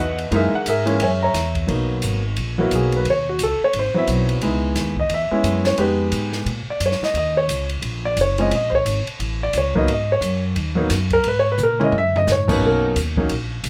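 A brisk swung 4/4 drives this moody, swinging jazz piano trio excerpt. An intimate, up-front concert grand with deep bass and audible action noise carries the melody and takes a solo from 1.7 s, over growly, woody pizzicato upright bass on steel strings. An airy, polished small-room drum kit with dark cymbals, a medium-tuned snare and a boomy kick enters at 0.2 s and plays a fill at 11.6 s, all set in light reverb.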